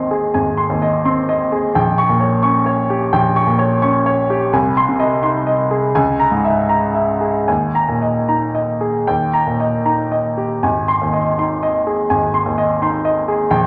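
The rhythm flows freely in four, pushed and pulled with rubato so the pulse breathes rather than marches. This is a romantic character piece for solo piano, lyrical and hopeful in mood, cut from a longer work and lasting about 13.7 seconds. The grand piano plays alone throughout, its tone clear and present, placed up front and reaching from deep in the bass up into the bright upper register. The harmony moves through a gently searching sequence of colored chords, pausing on a suspended chord near 7.5 seconds before settling on its home chord at 10.6 seconds. A recital hall reverb surrounds the instrument, giving each phrase a soft, lingering bloom.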